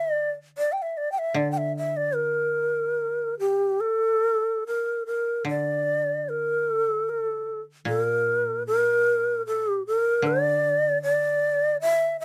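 Austere and calm, this brief excerpt of rubato Japanese chamber music sets a breathy, bright bamboo shakuhachi up front, its unsteady, vibrato-laced melody carrying tongued chiff and lifted highs, over a woody, dry koto accompaniment plucked with fingerpicks low in the background, all caught by close, detailed microphones in a light reverb, with a second section arriving at 4.6 seconds.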